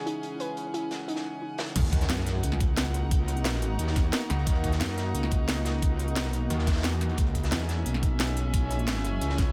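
A snarling, growling distorted saw bass and a metallic, wobbling FM bass dominate this tense, aggressive stretch of dark technical drum and bass at 177 BPM in Eb phrygian. The saw bass hits at the drop at 1.8 seconds alongside a knocking up-front electronic kick, a background impact, and a layered kit with cracking snare, crisp hats and crash, and the wobble bass follows at 2.1 seconds. Before that, a warbly, lo-fi pluck plays arpeggios under a filter sweep over a deep, moody pad and a bright, earthy chamber string section, both pumping against the sidechain. A gritty, saturated breakbeat kit with a rolled-off top sits in the background throughout, as chords move from Dbm to Ebm and back to Dbm at 7.2 seconds in this cut from a longer piece.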